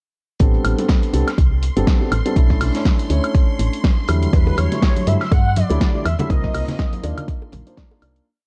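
Deep house at 122 BPM with a swung sixteenth feel and a moody air, built on an up-front four-on-the-floor electronic kick roughened by 12-bit sampler grit, a woody, round FM bass riff, dark felt-muted upright piano stabs moving one chord shape in parallel through sidechain pumping and tape echo, a dry, overdriven analog drum machine on hats, backbeat snare and woodblock, a very quiet brushed jazz-kit breakbeat, and a shimmering string-machine violin note held high in the background, all joined at 4.3 s by a horn-like synth lead with vibrato and chorus and by syncopated congas and bongos, the piece sitting in a small room with cassette-tape character before fading out from 5.6 s.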